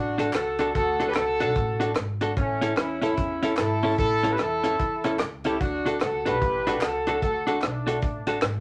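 A swung 4/4 groove at 148 BPM drives this bouncy, upbeat ska excerpt, where a dark, dry reggae drum kit with a tight kick, hi-hat and rim click sits under woody pizzicato upright bass, a clean, compressed, picked electric guitar accompaniment, crisp group handclaps in the background, and a punchy horn section with light vibrato carrying the melody up front over a D to A and back to D progression, all in a short, wet studio reverb.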